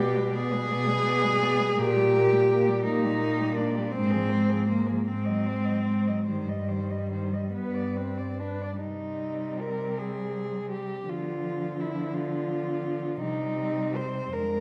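Four dark, veiled, bowed muted cellos open together in a melancholic, solemn classical passage in C minor, moving in a rubato 6/8 at 46-58 BPM (dotted quarters), with a lightly vibrato-tinged melody on top, an up-front second line beneath it, a close accompaniment voice with vibrato, and an up-front, soft-attacked bass, all resonating in a recital-hall reverb that lingers about 1.4 s as the music shifts into a new section at 8.8 s before this fragment of a longer piece closes on C minor at 13.2 s.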